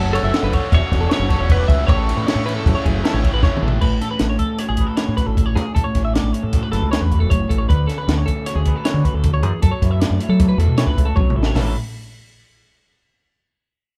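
Captured as a band playing live in one room with light reverb, this cut from a longer piece sounds intricate and bright, a blend of math rock and midwest emo in a straight 5/4. A clean, compressed twelve-string electric guitar picks arpeggios throughout, while a second, twangy twelve-string carries a short picked melody at the opening beside a double-tracked, overdriven guitar riff. At 3.8 seconds that riff gives way to a fingered electric guitar through a small old amp, slightly broken-up and shimmering with vibrato, as the chords move from F#m and A into A69, Dmaj7 and F#m7. Up front, a growling fingered bass with overdrive sounds round and punchy, and a compact cocktail drum kit with a high-tuned snare, punchy kick and a dark, rolled-off top rounds out the band. The drums mark each turn with fills, the last one landing around 11.2 seconds.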